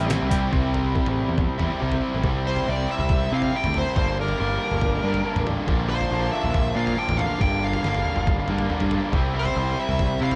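A dry, close recording with a 1970s studio character and little reverb frames this bittersweet, cool slice of indie rock, cut from a longer piece and moving at 140 BPM in a straight 4/4. Up front, a raw, bright garage guitar plays a double-tracked, overdriven riff, while a growling picked electric bass, both direct and amped, digs into the low end with its own overdrive. Above them, a dark, smooth lead guitar carries the melody through an overdriven tone. The drums have a sampler-style trip hop flavour, compressed, pitched down and gritty, with a thumpy kick, a medium-tuned snare and the feel of being re-recorded in a small room, and the kick and snare briefly drop out at 1.8 seconds and again at 8.7 seconds. Underneath, the harmony moves from C to G minor, then through Bbadd9 and Gm7 before returning to C at 9.1 seconds.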